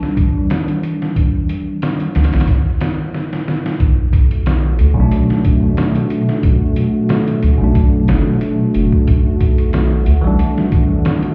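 Heard as if muffled through a wall, this short dark, smoky trip hop cut carries club reverb and vinyl crackle, with its top end rolled off. At 91 BPM in 4/4 with a slight swing on the sixteenths, a compressed, pitched-down sampler-style drum kit sits up front, its thumpy kick, medium-tuned snare and hi-hat sounding gritty, as though re-recorded in a large room. A bell-like tine electric piano plays clean, direct accompaniment in B minor throughout, treated with harmonic tremolo, tape echo and vintage 12-bit sampler grit, moving from Em7 to Bm7 and on to Em7/B. A round analog bass, deep and sustained with a fast attack and a wave-folded edge, enters at 2.2 seconds and sits loudest in the mix, and shortly after, a brief break with a drum fill leads into the second section. From 4.3 seconds a moody, full-bodied ambient pad adds slow-swelling sustained chords low in the blend, its detuned sawtooth layers and sub octave softened by chorus and its own reverb.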